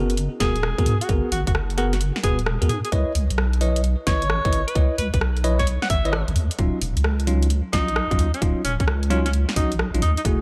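Bouncy and skippy, this two-step UK garage excerpt moves at 131 BPM in 4/4 with a 67% swing on the sixteenths, cycling through G#m9, C#m9 and D#m9 chords. A deep, wobbling bass with chorus sits up front and dark, its saturated, detuned tone carrying the low end alongside a tight, layered electronic kick that enters at 0.4 seconds. The garage drum kit adds a cracking snare, rim clicks and bright hi-hats, while a bell-like tine electric piano plays clean stabs through tape echo. Over this, a solo alto saxophone takes the melody from 0.4 seconds, jazz-styled with vibrato, scooped notes and a smooth top, also sent through tape echo. A light reverb places the parts in a modest space, giving the groove a polished, produced sheen.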